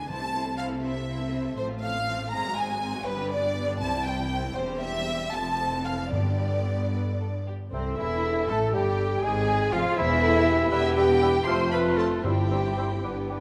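The 6/8 pulse moves at 74-82 BPM in dotted quarters with a rubato feel, carrying this cheerful, spirited classical-period orchestral movement in C major, cut from a longer piece. A dark violin section sings the melody over a close, up-front second violin line full of vibrato and portamento, with a rich viola section and smooth cellos and double basses underneath, while round, soft-mallet timpani on calf heads strike three brief times. At 7.7 seconds the background fills with a pure, crisp flute, a mellow cor anglais, a close-miked clarinet, a roomy bassoon and French horns holding sustained chords, all bathed in a wet concert-hall reverb until the cut at 13.4 seconds.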